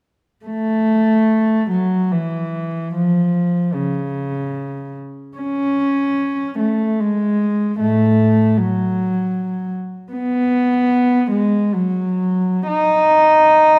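A recital hall's lush reverb, with a decay of 1.6 seconds, surrounds a single bowed cello placed up front, its tone pure and floating, with a soft attack and a smooth top drawn from sul tasto playing. This short classical excerpt for unaccompanied cello unfolds freely and expressively in 3/4 at a rubato 62-79 BPM, lonely and yearning in mood. The cello sings alone from 0.5 to 13.8 seconds, ranging from A2 to D#4.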